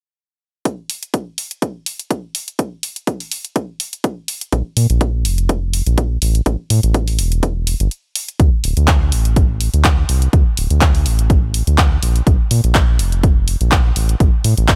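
Moody and late-night, this deep house excerpt moves at 124 BPM in D minor with a light swing on the sixteenths, built from a layered, tape-tinged electronic kick sitting up front alongside a dry analog drum machine supplying handclaps and hi-hat, both starting at 0.7 seconds. A round, deep analog bass blending sawtooth and sine tones enters at 4.5 seconds, its dark, sustained notes spanning D1 to Bb2 with sidechain pumping. After a brief break at 7.9 seconds, the groove returns in a new section, all in a close, nearly reverb-free sound.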